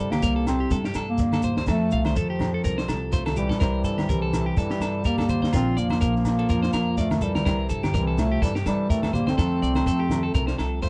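A dry recording carries this joyful highlife guitar band excerpt at 125 BPM in 4/4 with a swung sixteenth-note feel in C mixolydian, led up front by a mellow, soft-attacked bass clarinet melody over woody, thumpy pizzicato upright bass on gut strings. Around them, a twangy, slightly broken-up electric guitar picks arpeggios through a slapback echo, a boxy fingerpicked flamenco guitar sits in the background, and a distant compact cocktail kit with punchy kick and high-tuned snare joins low-tuned congas played with soft hands, grainy shekere and ringing agogo bells. During a drum fill that begins at 3.2 seconds, a bright, roomy trombone with vibrato enters at 3.4 seconds as a second line in the background, as the chords move among C, F and Bb.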